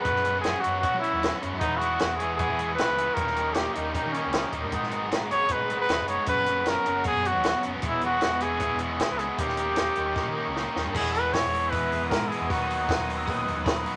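A smooth, classical-style trumpet leads this restless, cool indie rock excerpt, carrying the melody up front at 154 BPM in a straight 4/4 before dropping out at 13.1 seconds. Beneath it, two bright picked electric guitars play riffs, one overdriven and the other distorted and compressed further back, while a growling picked bass with overdrive anchors the low end. A compact cocktail drum kit sits dry and close, with a punchy kick, high-tuned snare, hi-hat and dark crash cymbals, and a drum fill leads into the second section at 10.9 seconds. A silky, warbling string machine with ensemble chorus holds soft, slowly evolving chords in the background over a progression that moves through F#sus4, E6, D#7 and G#m7 before turning to Emaj7 and B6/D#. Near the close, a sparkling glockenspiel played with hard plastic mallets adds a bell-like second line from 12.9 seconds, all within a moderate studio reverb.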